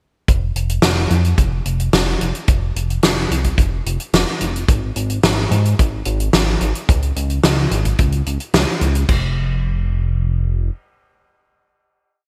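A chorused synth bass anchors this short, driving synthwave piece, its glossy pulse and sawtooth tones shifting through pulse-width modulation and a moving notch while it pushes a steady eighth-note line from the low register. The mood is nocturnal and insistent, carried by a straight feel in 4/4. A punchy, up-front kick drum with a machine-like character plays alongside a natural acoustic kit whose fat snare, closed hi-hat and crash are treated with gated reverb for an 80s backbeat. The whole production has a bright digital sheen from that era, set in a lush hall reverb. After the verse, the drums stop at 9.2 seconds and the mellow bass rings on alone until 10.7 seconds as the final note.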